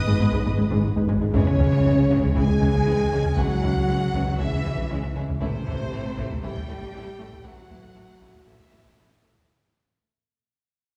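A wet scoring-stage reverb sets this brooding hybrid orchestral and electronic film cue a little back in the room, and the whole piece fades out from 1.3 seconds onward. At 118 BPM in a straight 4/4, a dark, relentless pulse is driven by a taiko ensemble struck with heavy sticks and a rubbery, hollow square bass riff. Beneath them, a pure sine sub bass and a quiet, woody double bass section hold the low end. A distant cello section adds shadowed bass lines, and a very soft, round pluck traces arpeggios. Above this, a studio violin section carries an expressive, lush melody with vibrato and a gentle attack. A richer violin section in the background plays a second line, supported by a smooth, very quiet viola accompaniment and mellow sustained French horn chords. The harmony moves from G#m to C#m and then to Am at 5.4 seconds, and a faint electronic sub drop marks an impact between 1.3 and 3.4 seconds in this excerpt from a longer piece.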